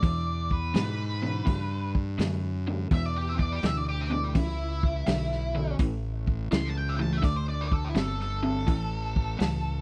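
Blues rock with a southern rock streak, this gritty, driving power-trio excerpt moves at 83 BPM in 4/4 with a swung eighth-note feel. A crunchy, bright overdriven guitar, double-tracked and picked, carries the riff in its low register, while a dark octave-fuzz lead guitar plays the melody higher up through wah and distortion. Underneath, a growly fingered electric bass with fuzz and overdrive sits up front, and a vintage drum kit of hi-hat, punchy kick and medium-tuned snare sounds lo-fi and muffled with a rolled-off top. The harmony starts on E7#9, then moves to A at 5.8 seconds, D5 and back to A. The sound is dry and close, in the manner of a 1970s studio recording with little reverb.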